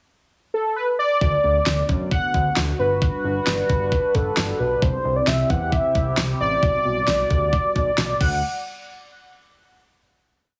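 A straight 4/4 drum-machine beat at 133 BPM, with a knocking kick and fat snare up front, drives this short, nostalgic and bright synth-pop piece in D mixolydian. A velvety, detuned sawtooth lead with chorus and vibrato plays a motif-based melody alone from 0.5 s. From 1.2 s a thick analog bass pulses eighth notes while an airy, resonant pad with a noise layer and chorus sustains D6, Gmaj7, C and Gmaj7/B chords, reaching D before a final hit at 8.4 s, all in a heavily compressed radio sound with moderate digital room reverb.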